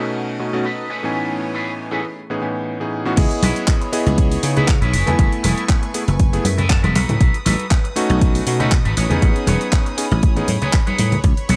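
A cutting electric grand piano with a clangy, vintage low end opens this sensual, groovy nu-disco excerpt together with a twangy, envelope-filtered electric guitar riff coloured with lush chorus and analog delay, a clear violin section holding bowed chords with light vibrato and sidechain pumping in the background, and a tape-toned house kit of hi-hat, handclaps and crash whose hats, cymbals and snare are softened by low-pass filtering. At 3.2 seconds the drop arrives as a punchy electronic kick and a growly, foam-muted thumbed slap bass, thickened by tube saturation and pumping, step up front. Medium-tuned congas played with soft hands ring quietly behind them. A clean electric guitar fill appears at 6.2 seconds, and the piano stops at 10.5 seconds. Sixteenths are lightly swung, and the echo-heavy mix sits in light digital ambience.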